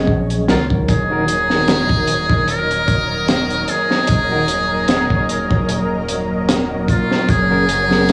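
This brooding, hypnotic trip hop excerpt in Eb minor opens on an overdriven reed electric piano, its reedy, barky tone shaken by fast tremolo and roughened by vintage sampler grit, a low-pass filter and tape echo. Beneath it sits a round sine sub bass, and in the background a flickering, grainy texture hangs on a single high note with its own reverb. A crunchy breakbeat kit arrives almost at once, with a punchy kick, a high-tuned snare and hi-hat that sit up front, saturated and dark with a rolled-off top, moving at 75 BPM with a light sixteenth-note swing. By 0.5 seconds a trumpet with a metal mute takes the solo in a jazz style, buzzy and thin with light vibrato, trailed by dub echo. A string machine with cellos enters at 0.9 seconds to hold full, sawtooth chords with ensemble chorus and a soft attack, as the harmony moves from Gbadd9 to Eb minor and returns to Gbadd9 at 7.3 seconds. 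The whole piece carries the character of a home cassette recording in a small room with light reverb.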